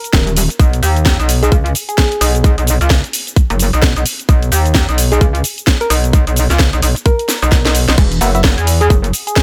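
A tight, produced mix in a digital ambience carries this swaggering, bouncy bass house cut at 130 BPM with a 16th-note swing, driven by an up-front electronic kick and a garage drum kit of cracking snare, hi-hat, cabasa and crash, which plays a fill from 7.3 to 8.0 seconds. A metallic, overdriven FM wobble bass pumps against the kick with chorus, while a soft, round struck synth lead carries the melody between Ab4 and Bb4 through chorus, phaser, tape echo and vibrato. At 8.2 seconds a hollow, wave-folded organ stab with 12-bit sampler grit lands briefly on an Esus2 chord.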